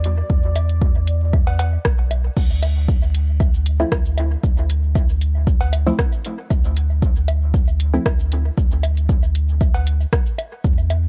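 A straight pulse drives this hypnotic, meditative dub techno fragment, with an overdriven, up-front electronic kick and a deep house kit of cabasa, crash, hi-hat and rim click trailing dub echo, while analog woodblock and cowbell pump against the sidechain beside a clean, smooth sine sub bass. A bubbling, resonant stepped-filter texture with chorus opens the piece until 2.4 seconds, and a muted, detuned chord stab with phaser and dub echo sounds from 3.8 to 8.0 seconds, its filter sweeping. The dry, gritty recording carries vinyl crackle and a dark, rolled-off top end.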